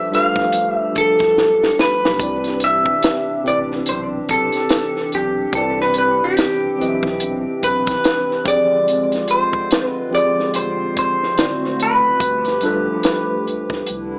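R&B with a neo-soul lean, this short cut from a longer piece moves at an unhurried, swung pace, with a smooth, soulful mood. An electric guitar through a small old amp carries the melody up front, its fingered lines slightly broken-up, compressed and lo-fi, colored by phaser and plate reverb. Beneath it, a worn, slightly out-of-tune tine electric piano plays accompaniment through its built-in speakers, lightly overdriven and bathed in plate reverb. A hollow, dark, flute-like pad holds sustained chords with a slow attack and chorus, while a round, sine-toned sub bass sits deep in the background. A compact cocktail drum kit, dry and acoustic with a punchy kick and a high-tuned snare, plays a fill from 1.4 to 2.2 s as the harmony moves from G9 to Cmaj7, later passing through Fm6 and D7 before returning to G9 at 12.2 s, all within a moderate room and a small-speaker sound.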